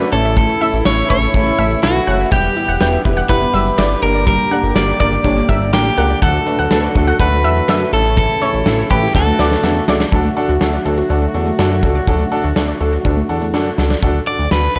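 A straight 4/4 groove from a huge, punchy acoustic arena kit of kick, snare, hi-hat and handclaps drives this nostalgic, bright synth-pop excerpt, with a drum fill at 9.1 seconds leading into a new section. An up-front, slightly broken-up electric guitar carries the picked, compressed melody through tape echo until 9.8 seconds, returning briefly at 14.3 seconds. A round analog pluck with chorus and echo adds a second line, and a glossy, tube-saturated synth bass anchors the low end. A natural-sounding baby grand piano plays accompaniment, a clear brass section holds sustained chords in the background, and a lush, detuned unison pluck spins echoing arpeggios, all within a dry, gritty small-room sound.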